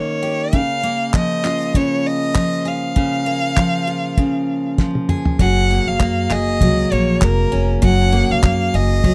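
A relaxed 99 BPM groove in 4/4 with a light sixteenth-note swing drives this heartfelt, easy-going acoustic pop piece in F# major, cut from a longer track. A bright, full-bodied picked steel-string guitar with audible finger squeak and a rich, focused bowed violin melody with vibrato open together, joined at 0.5 seconds by a dry, cloth-damped drum kit with a fat snare, tight kick, toms and handclaps. After a drum fill at 4.8 seconds, a woody, growly pizzicato upright bass arrives at 5.4 seconds, all captured up close and detailed in a nearly reverb-free room.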